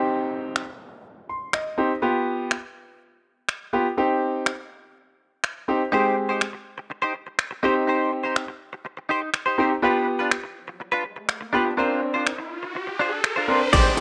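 A driving, confident dance-pop excerpt at 123 BPM in C minor, built on an up-front concert grand piano with audible action noise, deep bass and sidechain pumping, alongside a punchy, layered electronic drum kit with metallic hats and finger snaps that enters at 0.6 seconds, while a downlifter opens the piece and a riser builds from 11.4 seconds. A bright, twangy, direct-recorded clean electric guitar riff with analog chorus joins at 5.9 seconds over chords moving from Cm through G7/B and Abmaj7 to Bbadd9. In the final moments at 13.7 seconds, a guitar melody note, a round sine sub bass and a barely audible glassy FM pad arrive, all in a rough home demo mix with light reverb.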